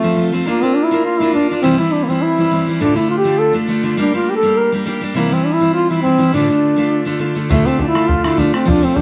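Celtic folk reel in D minor at a brisk 205 BPM with a lightly swung feel, this spirited, wild excerpt from a longer piece puts a mellow, vibrato-rich duduk up front on the melody over a picked jumbo steel-string guitar, whose chords move through Bb, C, Dm and Gm with audible finger squeak. Both carry a cassette tape coloring, and the home recording sits in a small, wet room. At 7.5 seconds a boomy, band-limited bodhran with a vintage character joins for the final stretch to 9.0 seconds.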